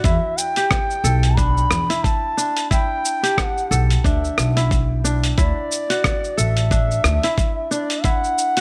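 Organic downtempo with an earthy mood and a gently swung feel, cut from a longer piece and moving from Em7 to D. A reedy bass bansuri carries the melody with vibrato, a soft attack and rolled-off highs, while a mellow, fingerpicked kora rings out crisp arpeggios beneath it, both touched with tape echo, and a growly, woody pizzicato upright bass sits up front with sidechain pumping until 7.2 seconds. Gritty, overdriven sampler-style drums supply hi-hat, rim click and shaker beside a thumpy electronic kick that stops at 8.2 seconds, both drum parts bathed in studio reverb within a small room sound.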